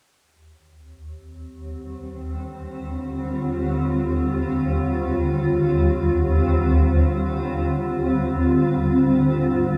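Soaked in plate reverb with a dreamy cassette-tape haze, this luminous, weightless ambient passage in free time and Eb major is carried by a single granular cloud pad that fades in at 1.1 s and sits up front with bright, blurred, evolving sustained chords, wrapped in its own reverb and a lush chorus, drifting from Ebmaj7 to Abmaj7 at 8.1 s.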